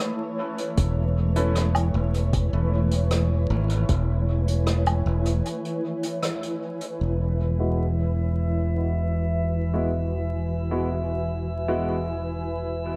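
Ambient dub at 77 BPM in E major, this hazy, spacious fragment is cut from a longer piece and sits under a soft bed of vinyl crackle and light studio reverb. A blurred, cloudy granular pad holds sustained chords throughout, moving from Aadd9/E to Eadd9 at 7.0 seconds, while a growly, up-front fingered electric bass with tube saturation anchors the low end. A deep, tape-toned electronic kick joins a vintage brush kit of hi-hat, rim click and woodblock, its rolled-off top trailing dub echo. The kick drops out at 4.0 seconds, and the brush kit carries the groove until a break at 5.5 seconds and a band accent just after. A bright, woody upright piano offers a brief stab early on, then returns with low-pass filtered, echoing stabs under a filter sweep in the second half. From 7.4 seconds a calm, glassy texture of drifting overtones, thickened by chorus and reverb, floats alongside the pad.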